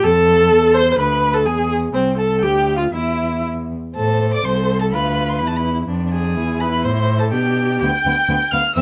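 A string quartet opens together on an F chord, launching a quick classical-period movement in A minor at 125 BPM in 2/4, with a graceful, cheerful character despite the minor key and a rubato feel. The first violin carries the melody high with a rich, smooth vibrato, while the second violin sits in the background with its own line, the clear, focused viola stands up front as accompaniment, and the cello anchors the bass with a close, even tone. Recorded dry and in detail, the short fragment reaches a brief chordless moment near 2.9 seconds before a new section begins at 4.0 seconds, moving through Am, E and G/D harmonies.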